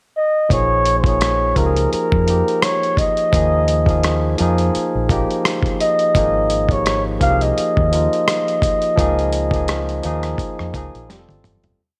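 Late-night and sultry, this complete neo-soul R&B piece moves at an unhurried 85 BPM in 4/4 with a gentle sixteenth-note swing, set in Bb dorian. A mellow flugelhorn opens with a brief pickup at 0.2 seconds, playing a motif-based solo melody built from call phrases; its tone sits distant and roomy yet stays up front in the mix. From 0.5 seconds a barky tine electric piano adds bright, clean rhythmic chords in quartal voicings dotted with grace notes, moving through Bbm7, Ebsus24, Absus2 and Db6. Underneath, a deep dub fingered electric bass lays down a dark, round, laid-back line with muted ghost notes and chromatic approach notes. A gritty, compressed sampler-style drum kit carries a slow sixteenth-note groove with a thumpy kick and medium-tuned snare, then closes with a fill at 11.1 seconds on a Fadd9 chord as the piece fades out under light reverb.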